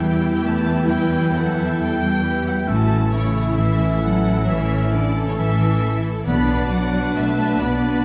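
A wet scoring-stage reverb gives this swashbuckling cinematic cue a spacious, adventurous sheen, cut from a longer piece and moving at 134 BPM in a straight 4/4 in E dorian over Em, A and Bm. A clear, distant violin section carries the intense, lush melody with vibrato, while a second violin section, focused and in the background, adds its own line beneath. A mellow solo oboe and a roomy background clarinet trace further second lines, and a warm viola section fills in expressive, portamento-touched accompaniment. A very quiet, dark French horn section holds sustained chords, and a ringing, fingerpicked concert harp spins arpeggios across its range. The low end rests on a rich cello section and a smooth, even double bass section placed up front, with very quiet, articulate timpani struck with hard mallets from 6.3 to 6.9 seconds.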